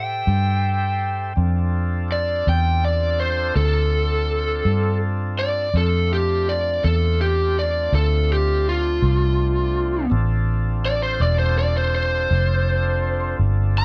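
A dry, close recording with a 1970s studio character and little room sound frames this soulful, smoky slow blues in a straight 12/8, taken from a longer piece. An electric lead guitar, picked through a small cranked amp for a warm, overdriven bite, carries a solo melody up front from start to finish, climbing as high as C6. Beneath it, a foam-muted electric bass played with the fingers sits dark, round and punchy near the front of the mix. Further back, an overdriven tonewheel organ holds thick, gritty sustained chords with audible key click, turning through a slow rotary speaker. The harmony moves from Am7 to Dm7 at 1.4 seconds, and all three parts play throughout the 13.8 seconds.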